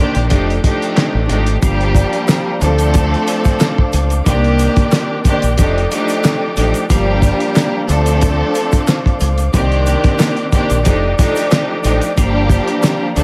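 Boom-bap hip-hop with a reflective, moody swing, this excerpt opens on a clear, bowed studio string section with vibrato and a cassette-tape tint, soon joined by a cloth-damped, gritty drum kit with handclaps, a fat snare and a tight kick, plus a deep, round fingered dub bass up front, while from 1.6 seconds a flute-like tonewheel organ with key click and fast rotary speaker and a grainy tube shaker sit in the background over minor seventh and extended chords, all wrapped in light reverb and vinyl crackle.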